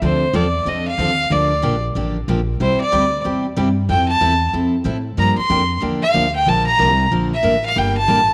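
A clear, intense fiddle sits up front and solos from start to finish, bowed by a single player with light vibrato and a smooth top end, ranging from C5 to C6. Beneath it, a full-bodied picked dreadnought acoustic guitar with fresh strings keeps time up front, while a woody, thumpy pizzicato upright bass on gut strings supplies the dark low end. This short, swinging, down-home western swing clip, cut from a longer piece, moves at 186 BPM in 4/4 through chords from Dm7 and Gm7 to Fmaj7 and Bb, all set in a moderate echo chamber reverb.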